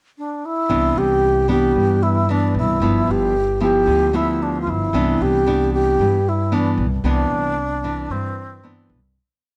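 A sophisticated, sunny bossa nova in a straight 4/4 feel, this short piece opens with a bright wooden-headed alto flute alone in a brief pickup before the band arrives at 0.7 seconds. The flute carries a motif-based melody built on hook phrases, airy and crisp in attack with vibrato and lifted highs, sitting up front though a little unsteady. A nylon-string guitar, fingerpicked in classical fashion with audible finger squeak, supplies full-bodied bossa nova accompaniment of thumb bass and syncopated plucked chords through Cmaj9 and G6. Beneath it, a pizzicato upright bass with steel strings plays a woody, growly dotted root-and-fifth line. Light reverb surrounds the parts, a worn, warbling old-cassette character adds pitch drift, and the music fades out from 7.0 seconds to its close.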